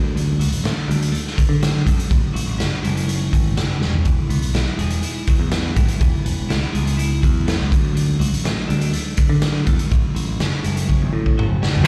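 A straight 4/4 pulse drives this short cut from a longer quiet-loud alternative rock piece, with a cathartic yet bittersweet mood. A raw garage drum kit sits up front from 0.2 s, with a punchy kick, a medium-tuned snare, hi-hat and toms, and a saturated, gritty sound that is dark and smooth with a rolled-off top. Drum fills arrive at 3.8 s and again from 10.9 s to the close. A picked electric bass carries the low end, direct and punchy with a warm tone. In the background, a twelve-string electric guitar plays clean, twangy arpeggios with a compressed, bright edge and a slapback echo, moving through D, A6 and Eadd9 before returning to D and A6. The performance comes from a live gig heard through the venue's PA, with a touch of club ambience around the band.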